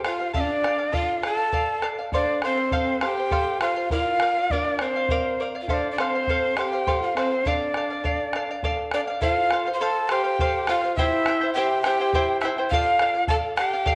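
A 6/8 pulse gradually speeds up through this short cut of wistful, earthy Andean folk. Up front, a breathy cane quena carries the melody with vibrato, a crisp chiff on its attacks, rolled-off highs and a slightly unsteady tone, while a fingerpicked acoustic charango shimmers alongside on double strings, some doubled at the octave, and a round bombo sits lower in the mix. From 0.1 s a bamboo pan flute adds a tongued, vibrato-tinged second line in a lower register, and the ensemble is bathed in a wet echo chamber reverb with a small room ambience.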